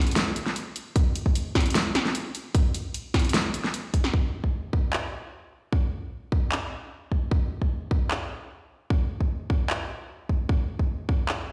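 The recording sounds as if it is played through a big sound system in a bare stone room, with a moderate reverb lending the hits a hard, echoing tail. This short future bass excerpt runs at 151 BPM in 4/4 with a half-time feel, and its mood is emotional and bittersweet. A layered, produced pop drum kit opens the drop at 0.0 seconds with handclaps, hi-hats and a fat snare, all placed up front. An electronic kick drum joins at 1.0 seconds, hard-clipped and tape-warm, sitting just as close to the listener. After the drop gives way to a new section at 4.1 seconds, the two drum parts carry on together to the end of the cut.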